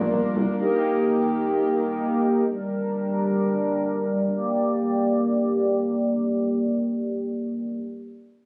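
A round, brassy synth brass and a shimmering, retro pulse-width pad open this wistful yet upbeat pop fragment together in free time in Bb major; a filter sweep runs through the first 4.3 seconds over Bb6, Eb and Gm chords, the brass drops out at 2.4 seconds, and the dark, chorused pad sustains on to 7.8 seconds, all set in a wet small room that sounds captured on a phone.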